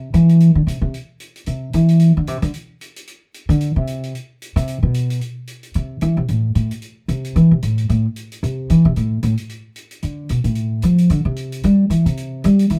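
Lightly reverberant and heard from further back in the room, this cool, late-night small-group jazz excerpt swings at 224 BPM in A minor, with a woody, up-front pizzicato upright bass on steel strings taking a solo for the whole 12.8 seconds while a faint, natural acoustic hi-hat ticks along from 0.1 seconds.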